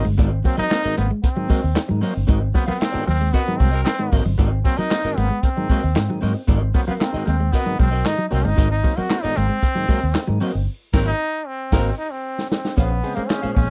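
Strutting and energetic, this funk excerpt puts a brilliant, punchy trombone melody with vibrato over a dark, foam-muted fingered electric bass and a vintage drum kit with a tight kick, snare, hi-hat, crash cymbal and handclaps. A hollow-body jazz guitar adds clean picked accompaniment while a compressed electric guitar plays a riff, and an overdriven, gritty tonewheel organ stabs through a slow rotary speaker in the background. A raspy, growling tenor saxophone surfaces briefly as a second line during the band accents, and a drum fill at 12.3 seconds leads into the chord change, all captured in a dry, close 1970s-style studio sound.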